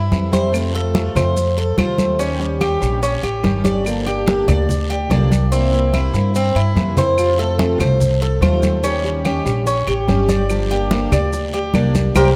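A sunny son guajira excerpt in F major at 145 BPM opens with the metallic, double-strung Cuban tres picking arpeggios over a thumpy, gut-strung upright bass up front, joined by a boxy picked acoustic guitar with analog chorus, while thick-skinned congas, a raspy guiro, grainy maracas and woody claves sit in the background of a dreamy plate-reverb wash, with a drum fill at 6.8 seconds and a band accent at 12.2 seconds.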